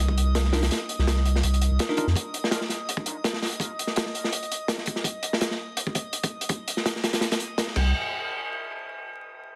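A crunchy jungle breakbeat drives this frenetic, nostalgic drum and bass fragment in a straight four, its acoustic kit sounding gritty and saturated in a small room, with a tight kick, medium-tuned snare and dark, rolled-off cymbals and hats sitting up front from 0.1 seconds. A thick, saturated sub bass with a fast attack anchors the opening minor chord, then drops away at 2.1 seconds and returns only for a brief moment near the end. Bell-like tine electric piano stabs ring out clean and bright between 0.5 and 2.1 seconds, trailed by dub echo. Behind them, a calm, glassy texture of drifting overtones sustains in the background until 7.9 seconds, treated with chorus and its own reverb. The dense, heavily limited master carries a light studio ambience and a layer of vinyl crackle that adds to the retro atmosphere.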